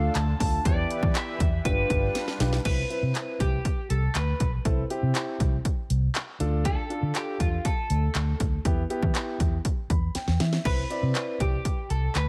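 A straight 4/4 house beat at 120 BPM drives this summery, carefree dance-pop in C major, with a punchy kick and cracking snare up front and drum fills at 2.2 s and 10.2 s. A round, foam-muted fingered bass and a mellow baby grand piano with long sustain both carry sidechain pumping, while a lush, detuned sawtooth pad with chorus holds chords in the background until 2.6 s. Over them, a picked electric guitar on the edge of break-up plays the melody through subtle chorus and digital delay; the piano adds a fill late in this cut from a longer piece, and the mix sits in a digital ambience.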